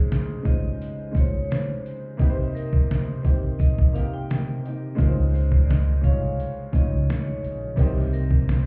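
Gritty, pitched-down sampler-style drums with a thumpy kick and medium-tuned snare swing at 86 BPM beneath this nostalgic, hazy lo-fi hip hop piece, where a woody upright piano with long sustain and cassette grain supports a bright, ringing hard-mallet vibraphone melody over Dbmaj7 and Cm7 chords, a growly pizzicato upright bass joins at 5.0 seconds, and the mix sounds muffled as if heard through a wall.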